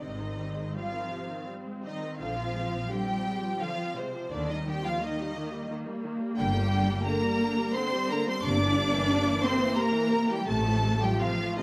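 Moving in a rubato 3/4 at 76-91 BPM, this tender, lyrical slow romantic movement for string orchestra in Eb major sets an up-front violin melody with light vibrato over a smooth second violin line, rich violas, expressive soft-attack cellos and woody double basses that stop at 11.1 s, all bowed in a moderate scoring-stage reverb and captured by close, detailed microphones in a short cut from a longer piece.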